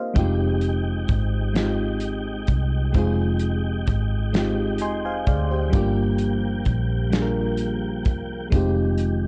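Slow six-eight R&B in F dorian at 43 BPM, sultry and late-night, where a soft, full-bodied FM electric piano with chorus plays the accompaniment and adds a fill from 4.3 to 5.7 seconds, a clean tonewheel organ with key click, chorus vibrato and fast rotary speaker holds sustained chords, and a dark, round, foam-muted fingered bass and a small-room soul drum kit with fat snare, punchy kick, hi-hat and 12-bit sampler grit sit up front as Fm9 moves to Gm7 and back, all in a short cassette-tape cut from a longer piece.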